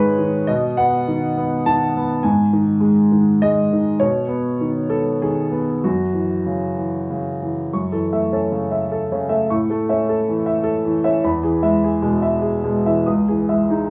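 A rough home demo with small-room ambience and light reverb frames a bright, woody upright piano that sits up front with long sustain. This melancholic, wistful neoclassical minimalist excerpt for solo piano moves in a rubato 3/4 at roughly 92-105 BPM in F# dorian, spanning C#2 to D#6 as it opens on B and Badd9 harmonies. At 7.7 s the second passage turns through F#m7, A and E before settling on C#madd9 at 13.1 s.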